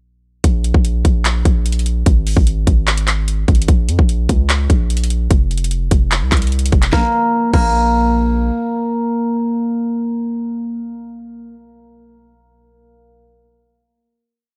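A dry, gritty hardware sound with a faint mains hum and little reverb frames this short, brooding and melancholic trap piece at 148 BPM in 4/4, played with a half-time feel. From 0.4 seconds an up-front electronic drum kit lays down the half-time trap beat. It has a hard-clipped kick, a sharp snare, metallic hi-hats with fast rolls, handclaps and a crash cymbal, all roughened by vintage 12-bit sampler grit. Alongside it, an up-front, deep 808-style sine bass holds long sub-bass notes between F1 and F2 that follow the kick, with a fast attack, a decaying tail and pitch slides. The verse moves from an opening with chords absent onto Bbm and then F5 before the harmony drops away. At 6.9 seconds an acoustic, thumb-plucked concert harp enters on Bb3 through a low-pass filter, its ringing, octave-doubled phrase repeating like a sampled loop and carrying the final note to the close at 10.8 seconds.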